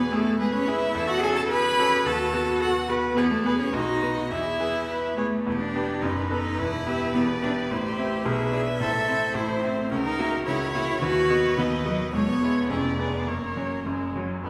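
Set in a reverberant recital hall, this lively, graceful excerpt from a quick classical-period piano quartet movement features a clear, close violin carrying the smooth, vibrato melody until 14.1 s, a rich cello up front singing a second line, a viola adding even, bowed accompaniment, and a bright concert grand with deep bass and short sustain, all shifting to a new section at 5.5 s.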